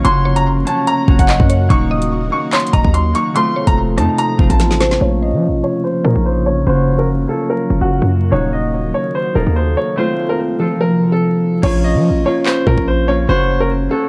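Drill hip hop at 145 BPM in a half-time 4/4 feel, ominous and dark in Bb harmonic minor, with a bright, woody upright piano carrying the melody through a low-pass filter and delay over thumb-plucked concert harp, an ethereal sawtooth pad with ensemble chorus, and a punchy, heavy 808-style bass up front. The drill kit's knocking kick, woody snare, metallic hats, claps and rim clicks drive the opening until a fill at 4.6 s, while a round, mellow FM mallet pluck with chorus and delay adds a second line. From 5.0 s the drums drop out under a filter sweep, returning briefly at 11.6 s with the hi-hats muted, all in a dark production with light reverb and vinyl crackle in this cut from a longer piece.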